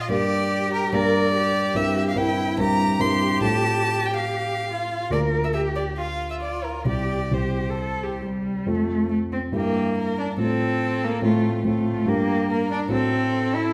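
A quick 4/4 pulse at 143 BPM moves with a rubato give and take through this cheerful, graceful classical-period movement for piano trio in F major, cut from a longer piece. Up front, a close, smooth violin with vibrato carries the melody, while a rich, focused bowed cello sings a second line and a dark, mellow concert grand with deep bass supplies the accompaniment, all three playing throughout. The recital hall adds a wet reverb, and the harmony shifts from G minor through C7 and B-flat, settling on F at 8.7 s before passing through diminished chords in the closing section.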